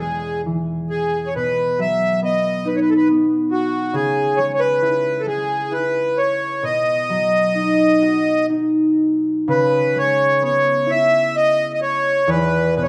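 A free, rubato lilt in 3/4 carries this wistful, nostalgic Celtic slow air, a short passage cut from a longer piece. Up front, a reedy accordion with a slow beating shimmer sings the melody from start to finish, while a mellow, thumb-plucked concert harp rings beneath it as accompaniment throughout. Both sit in the moderate glow of a recital hall, and a new section arrives at 9.5 seconds before the passage closes at 12.9 seconds.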